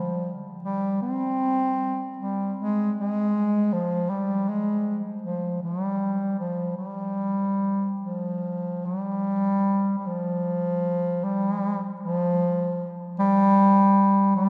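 A mellow bass clarinet carries this brief solo from start to finish, its soft attack and classical phrasing set up front in the sound. The piece belongs to the world of Japanese traditional chamber music, and the mood is calm and austere, with a free, rubato feel in a steady four. The line stays within a narrow span from F3 to C4, keeping the reed's voice dark and rounded. A long cathedral reverb surrounds the instrument, letting each note hang in the resonant space of a church or concert hall, while the top end stays muted and soft. The melody moves through two sections, shifting to a second idea at 8.8 seconds before the fragment, cut from a longer piece, breaks off at 14.5 seconds.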